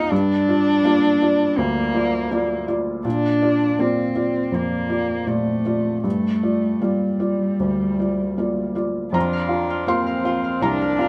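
A lightly reverberant, intimate-sounding excerpt of reflective, melancholic neoclassical piano and strings in G minor at 80 BPM with a rubato feel, where a felt-muted upright piano, soft and mellow up front, accompanies a dark, woody bowed cello with vibrato as the second line through chords of Gm7 and Bb, until at 9.1 seconds a floating sul tasto viola and a bright, ringing fingerpicked Celtic harp playing arpeggios enter as the harmony settles on Fsus4.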